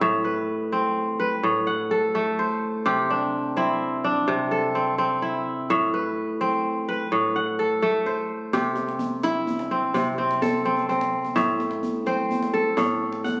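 The kora leads this West African traditional string piece, its fingerpicked arpeggios sounding crisp, ringing and up front as they span from A2 to F#5. The mood is hypnotic and joyful, moving at 85 BPM in a straight 12/8 in C lydian, with the harmony alternating between Am and C. At 8.5 seconds a djembe enters beneath the kora, deep and acoustic with metal rattles and a small-room character, sitting well back in the balance. The whole is bathed in a wet recital hall reverb, heard as though captured on a phone in the room, lending a club-like ambience. This is a short section cut from a longer piece, ending at 13.4 seconds.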